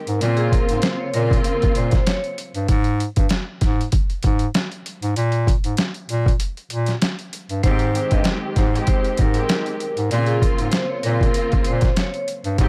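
A ringing, band-limited vibraphone with delay opens this soulful, nostalgic boom-bap hip-hop fragment, joined almost at once by a gritty, overdriven sampler-style drum kit with a thumpy kick, an up-front, clear bass clarinet carrying the bass line, and lush, bowed strings with a cassette-tape tint; the vibraphone and strings drop out at 2.3 s, and after a short break at 6.4 s they return around 7.6 s, all set in a dry room.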